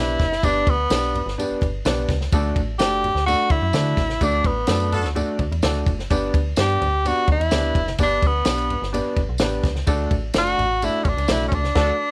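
A straight 4/4 groove at 127 BPM drives this danceable, upbeat slice of 1960s-style soul, tuned to A4 = 436 Hz and cut from a longer piece. A compact cocktail kit sets the pulse with a tight kick, high-tuned snare and dark crash and ride cymbals, while very quiet, low-tuned congas and a jingly, vintage-sounding tambourine sit far in the background. Up front, a bright, forceful tenor saxophone carries the melody with jazz-style vibrato. Beneath it, a woody upright piano with long sustain supplies the accompaniment, and a metallic FM bass with a fast, decaying attack anchors the low end. The band hits accents starting at 4.2 seconds and again at 11.8 seconds, and a clear, punchy horn section briefly adds a second line at 4.7 and 11.8 seconds. Throughout, the chords move from G to D, back to G and onto a rootless Bm7. The dry sound has little reverb, giving the whole performance an intimate, warm feel.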